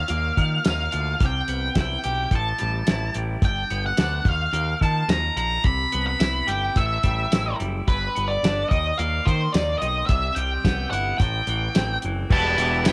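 Recorded at home on cassette in a small room, this short indie rock cut has a carefree, upbeat feel at 108 BPM in a straight 4/4. An up-front octave-fuzz lead guitar carries the melody with a dark, distorted tone, colored by tape and analog delay, while a biting overdriven guitar plays the riff underneath. A growling, round electric bass sits up front with overdrive, and a cloth-damped drum kit thuds along with a fat snare, tight kick, dark cymbals, hi-hat and tambourine, its top rolled off. The chords move through Ebsus2, Cmaj7, A5 and G before shifting toward Eb5, Am7 and finally Em7. At 12.3 seconds, a raw, bright garage guitar with analog chorus joins the riff in the background, alongside a very quiet, warbling string machine of violas and a sparkling glockenspiel struck with brass mallets.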